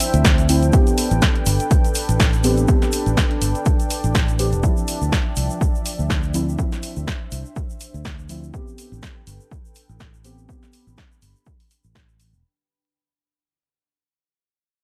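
A smooth, deep house excerpt opens with a mellow, slow-attack sawtooth pad, a moody ambient pad with ring modulation and built-in reverb, soft detuned chord stabs with dub echo, dry hi-hat and snare from an analog drum machine, and a grainy egg shaker in the background, before a round fingered electric bass enters at 0.1 s and an up-front punchy kick at 0.2 s; the pads, stabs and bass pump to the sidechain over swung 16ths, moving between Dm9 and Am9 chords above vinyl crackle as the passage fades out.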